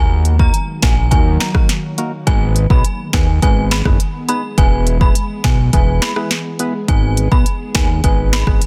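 Hypnotic and bouncy, this short dancehall cut moves at 104 BPM in G# minor, cycling through D#m, G#m, E and back to G#m across its roughly 8.7 seconds. A fat analog bass sits up front with a thick, saturated sawtooth tone and a plucky filter snap, sharing the foreground with an electronic afro-pop drum kit built from a deep kick, sharp snare, smooth hi-hats, rim clicks and finger snaps, the kit entering at 0.3 seconds. Above them, a percussive organ stab supplies hollow, mellow accompaniment through a light chorus. A chiming FM synth carries the melody high in the register, its inharmonic ringing tone shimmering through ensemble chorus, tremolo and tape echo. Behind it all, an ethereal, airy pad holds sustained chords with a slow attack, its own reverb and a sidechain pumping that gives it a breathing pulse. The mix is dry overall and densely limited in a modern style.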